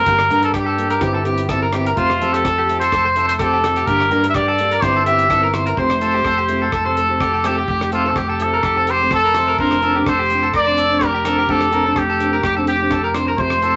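A clear, up-front trumpet carries the melody in pop style, with light vibrato and scooped notes giving it a vintage flavour, in this sunny, danceable highlife guitar band excerpt at 126 BPM in F major. Beneath it, a growly, punchy fingered electric bass and a dark, fingerpicked nylon-string guitar with audible finger squeak sit alongside an electric guitar at the edge of break-up, whose twangy picked arpeggios shimmer with harmonic tremolo. A cloth-damped, thuddy drum kit keeps hi-hat, tight kick and rim click low in the mix, and a wet studio reverb surrounds the band as the chords move from Gm and C/G onto Fadd9 at 5.8 seconds.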